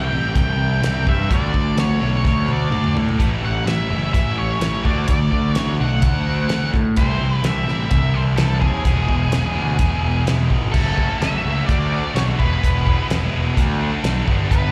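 Classic rock with a swaggering, confident mood, this excerpt moves at 127 BPM in a straight 4/4, cut from a longer piece and heard as a live gig through the venue's PA with recital hall reverb. An octave-fuzz lead guitar carries the melody in a dark, distorted tone with slapback echo, sitting over two riffing guitars: a bright, compressed distorted electric guitar in the background and a tight distorted guitar, both picked and also treated with slapback echo. The fuzz picked electric bass is the most forward part, round, punchy and overdriven, holding down the low end. A damped 70s drum kit enters at 0.4 seconds with a fat snare, tight kick, dark cymbals, hi-hat and toms, its sound dry with a rolled-off top, and it plays a fill from 2.2 to 3.2 seconds. The chords move through C, D, A and E before the closing passage from 10.7 seconds shifts to F#m, D and E.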